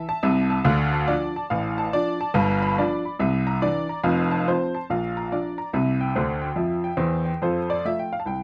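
Swinging in 4/4 with a lilting swung eighth-note feel, this exuberant, playful stride piano excerpt features a lone upright piano, woody, worn and slightly detuned with long sustain, sitting up front in a dry, close 1970s-style studio sound with light reverb and vinyl crackle, moving from Am through Dm, G7 and C9 to F, Bb and C before a fill at 6.2 seconds leads into a closing F at 7.4 seconds.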